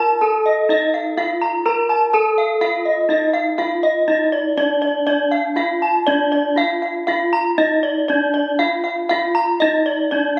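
Hypnotic and shimmering, this gamelan fragment is cut from a longer piece and moves at 121 BPM in 4/4 with an uneven beat, set in a D pelog scale tuned to A4 = 436 Hz. Two bronze metallophones of the gamelan type play throughout the roughly 10.4 seconds: the lower one carries the melody between D4 and Bb4, touched with tape echo, while the higher one spins arpeggios between D5 and Bb5 and sits a little louder. Both are struck with horn mallets, giving a ringing, bright metallic tone, and their paired tuning produces airy, beating shimmers that sit up front. The music shifts into a new section at 6.1 seconds. A wet recital-hall reverb with a 1.2-second decay surrounds the pair, and the sound was captured on a phone in the room, with studio ambience and compression.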